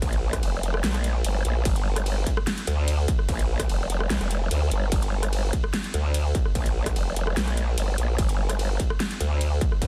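Chaotic and aggressive, this short cut from a longer heavy wobble dubstep track rides a half-time feel with a growl bass that sits up front, its bright, saturated, formant-filtered wobble thickened by chorus and overdrive in a low register. Beneath it, a distorted, layered electronic kick and a produced dubstep kit with a huge snare, metallic hats, ride cymbal and rim clicks carry a tape-warm edge. The mix is dry and dense, pressed hard by heavy limiting.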